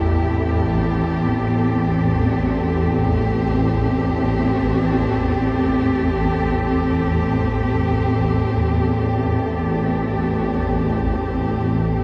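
This dark ambient drone excerpt opens with everything at once: a swarming low drone, a bowed cello section and a faint wind-like layer all sound from the first moment and hold for the full 12.0 seconds. Up front, the cello ensemble sustains a rich, smooth Am7 chord, its close, even tone carrying vibrato. Beneath it, the drone warbles and shifts in the deep register, a detuned, vintage-sounding mass with a grainy, evolving surface that keeps the mood tense. Far in the background, an airy, breathy noise texture tuned to a single high pitch drifts in slowly and lingers like a cold draft. A cavernous cathedral reverb, with a decay of 6.6 seconds, and a dark production wrap the whole in a desolate, shadowy stillness.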